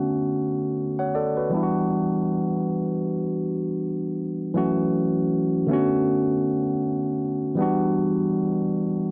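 A barky tine electric piano carries this brief R&B fragment on its own from 0.0 to 9.1 s, sitting up front with a bright, lightly overdriven bite from a combo amp and a phaser coloring its tone. The mood is late-night and introspective, moving at a relaxed 79 BPM in 4/4 with a gentle swing on the sixteenths. Set in E dorian and tuned slightly sharp to A4 = 445 Hz, the piano moves through lush extended chords, Bm9 to Em9, then F#m7, before returning to Bm9 and Em9. Its range spans D3 to F#5. A moderate studio ambience and a dark production frame the instrument, and the passage is cut from a longer piece.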